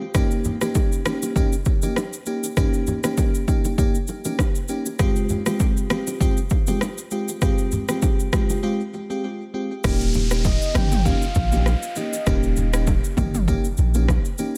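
An overdriven deep house drum kit sits up front, its punchy kick joined by rim click, shaker and toms in a layered electronic groove. This is a hypnotic, sultry afrobeats excerpt at 99 BPM in 4/4 with a gentle sixteenth-note swing, cut from a longer piece. A crystalline FM electric piano sparkles throughout with chorus and tape echo, moving between Eb7 and Fmadd9, while very quiet congas and bongos add bright, soft-handed acoustic color from a small room. After a break at 8.6 seconds, a deep sine sub bass with a pitch-drop attack and an electronic downlifter arrive at 9.8 seconds. A soft, round synth lead layered with a sub octave enters at 10.5 seconds, its dark tone carrying vibrato, chorus and tape echo. The whole mix floats in an echo-heavy digital ambience.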